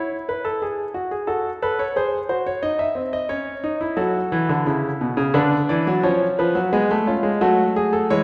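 Classical baroque-style three-part fugue for solo grand piano in F# minor at 88 BPM in a straight 3/4, contemplative yet driving, taken from a longer piece and tuned to A4 = 438 Hz. The concert grand sits intimate and up front, with deep bass, a polished tone and audible action noise, ranging from B2 to E5 across the full 8.2 seconds. Its harmony moves from a rootless C#m/E through F#m, G#7, Bm/D and C#7/E# back to F#m, set in a church or concert hall with a wet scoring-stage reverb of 1.6 seconds.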